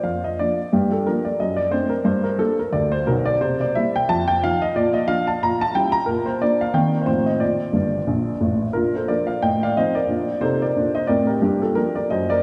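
A swung 4/4 pulse at 179 BPM drives this short, playful stride piano cut from a longer jazz piece in Bb major. A lone upright piano carries everything, its dark, worn, woody tone slightly detuned and placed up front, with audible action noise that lends an intimate feel while a long church reverb blooms around it. The changes move through Gm7, D7/F#, C7 and a Bbdim7 before a brief fill at 7.7 seconds leads into a repeat of the opening strain.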